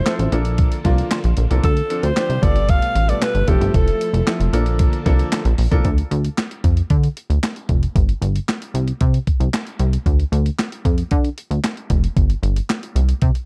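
A dark production bathed in digital ambience frames this funky, danceable early-eighties boogie funk cut from a longer piece. Up front, a breathy, close-miked alto saxophone plays a mellow, jazz-style solo melody with vibrato and slapback echo. Beneath it, a very quiet string machine of violins holds shimmering, warbling chords with ensemble chorus, and a bright, worn grand piano accompanies, slipping in a fill at 0.8 seconds. The harmony moves through Bbmaj7, Dm7, G9 and Fmaj7 before settling on Dm. The saxophone stops at 4.5 seconds and the strings and piano drop out around 5.8 seconds, leaving the groove to the rhythm section: a clean 12-bit drum machine with a sampler-style, tape-warm sound supplies thumpy kick, medium-tuned snare, hi-hat and handclaps, while a punchy, plucky analog bass with a fast attack and a ring-modulated edge carries the low end through chordless stretches.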